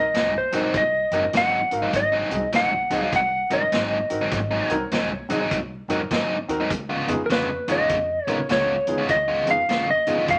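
Electric blues shuffle with a gritty, swaggering mood, where a slightly broken-up, compressed slide guitar carries the melody up front over a biting overdriven guitar riff, an intimate baby grand piano with audible action noise, a woody pizzicato upright bass in the background and a vintage drum kit with a punchy kick and rolled-off top, the harmony moving from Ab7 to Db7 at 6.7 seconds under moderate studio reverb and a layer of vinyl crackle in this brief cut from a longer piece.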